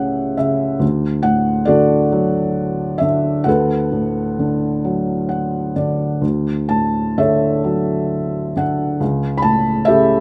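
Close, detailed microphones and light reverb frame a soft, mellow, intimate felt-muted upright piano with audible action noise, playing alone and up front in this tender, calm classical solo-piano passage in D major at 44 BPM in a rubato 6/8 with uneven beats, its lyrical lines drifting over chords from A7/C# through D, Bm7/D and Dmaj7 back to A7/C#, with brief fills at 0.0 and 4.8 seconds in a 10.2-second fragment cut from a longer piece.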